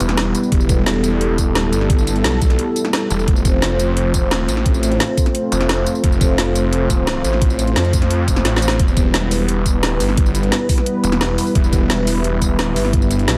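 Aggressive and futuristic, this dark technical drum and bass excerpt pairs a snarling, growling distorted saw bass and a moody, slow-attack analog pad with chorus, both pumping against an overdriven knocking kick that enters at 0.5 seconds and a kit of woody snare, bright hats and tambourine, with a drum fill at 8.5 seconds as the chords move from E minor to F and back, all set in a light digital ambience.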